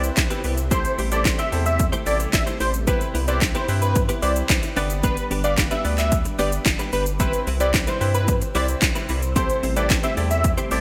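A bright, 1980s-style digital production with light reverb frames this summery, euphoric dance-pop clip at 111 BPM in C major, where a punchy, overdriven house drum kit with cracking snare, metallic hats, handclaps, shaker and gated reverb sits up front, and a barely audible electronic impact opens the first 0.7 seconds. A round, deep analog bass, brilliant grand piano accompaniment and a swirling, phased string machine in the background all pump with sidechain, while a clean, direct-recorded electric guitar plays a picked riff through ensemble chorus and a grainy tube shaker sits very quietly beneath. From 0.7 seconds a thick, detuned sawtooth unison lead carries the melody with vibrato and delay over chords moving between Cmaj7, Am7 and G.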